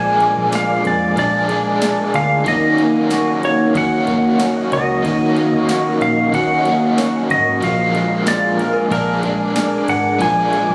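A booming analog drum machine, overdriven and re-recorded in a small room, sets a straight 4/4 pulse from 0.2 s with deep kick, crisp snare, ride cymbal and tambourine, over a round, punchy, foam-muted vintage electric bass in this haunting, hazy dream pop excerpt. A clean lap steel carries the melody with slide and volume swells through delay, while a bright overdriven guitar plays tremolo-tinged accompaniment and a guitar at the edge of break-up picks chorused, delayed arpeggios over Bb7 and Ebm7 harmony. An ethereal, airy pad holds detuned sustained chords in the background, a very quiet inharmonic FM chime rings at the start and again from 8.7 s, and the recording, captured on a phone in the room, sits in club reverb.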